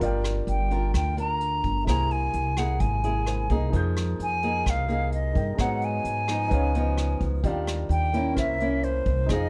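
A hollow, pure concert flute carries the melody from 0.5 seconds, its tongued notes and vibrato sitting up front in a plate reverb. This breezy, relaxed bossa nova section in a straight 4/4 feel is cut from a longer piece. A woody pizzicato upright bass holds the low end close and clear, while a fingerpicked nylon-string guitar with fresh strings adds small, intimate accompaniment, complete with audible finger squeak. A polished, present baby grand piano adds accompaniment higher up, and a vintage brush kit in a small room supplies hi-hat, rim clicks and a punchy kick. The harmony drifts through lush jazz colours, from Gm7 and C7b13 to Fm11, Ebmaj9 and a closing C7b9, all captured with close, detailed microphones and a light touch of room reverb.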